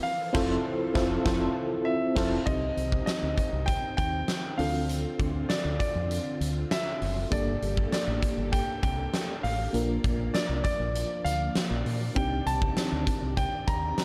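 This glossy, nostalgic slice of 1980s-style pop opens on an Fmaj7 with a band accent: a clear concert grand piano carrying the melody, an FM electric piano with tremolo, and vintage string-machine violas sustaining chords in the background. From 0.3 seconds, a huge arena drum kit arrives up front with a fat snare, punchy kick and bright cymbals, alongside a round, fingered electric bass. Very quiet, mellow synth brass adds nasal sawtooth stabs with chorus, phaser and vibrato, ending by 2.4 seconds. At 2.5 seconds the music moves into a new section at a steady 99 BPM in straight 4/4, moving through Cm, Dm7, Gmadd9, Bb and Cmadd9. The piano stays intimate and polished, with audible action noise and deep bass, while the full-bodied electric piano carries a noise layer. Light reverb frames a dark, warm production.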